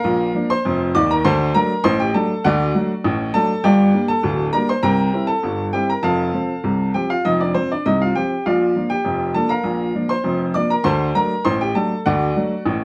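A straight, even 2/4 pulse drives this short ragtime piano passage, cut from a longer piece and carrying a playful, jaunty mood from start to finish. A single upright piano plays solo for the full 12.8 seconds, spanning a broad range from deep bass notes up into the bright upper register. Its tone is woody and vintage, with long sustain, and it sits up front in the mix. The harmony moves through a lively progression from Bb to D7, then Gm, C7 and F, before returning to Bb and reaching D7 near 10.9 seconds as the clip ends. A moderate club reverb gives the piano a sense of a small, lively room around it.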